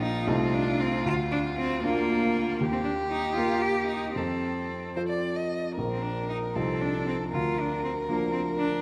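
A quick, cheerful classical-period movement for piano trio in 6/8 with uneven, rubato beats, this spirited excerpt, cut from a longer piece, sets a rich, focused violin with vibrato on the melody over a clear cello carrying the second line and a warm, open baby grand piano with long sustain supplying accompaniment, all three up front in a wet concert hall reverb from 0.0 to 8.8 seconds.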